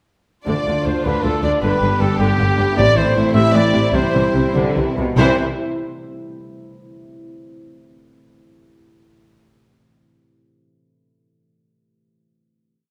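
A clear, roomy trumpet rings out up front at 0.5 s over violin sections, a rich viola section driving a rhythmic ostinato, and cellos and double basses, all opening a short, triumphant heroic adventure cue in C major and 6/8 at 95-106 BPM that moves through Dm, G, Am and C. One violin section doubles the tune in unison with smooth vibrato while the other holds focused, lush sustained chords, and the cellos push a driving bass ostinato and answer at phrase ends, with the double basses doubling the bass line, as the tempo slows from 2.2 s. A bright concert harp plays thumb-plucked broken chords in the background and rings on alone through the final chord until 6.4 s, carried by a wet recital-hall reverb.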